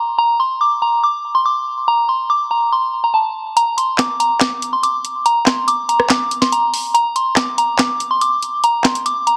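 A dense, heavily limited master with light reverb carries this melancholic, brooding half-time trap excerpt at 142 BPM, where a soft, pure FM synth bell with a warbling vintage chorus, a low-pass filter and delay plays the melody alone until a tape-warm electronic drum kit of handclaps, bright hi-hats, rim clicks and a sharp, softly clipped snare with 12-bit sampler grit enters up front at 3.6 seconds.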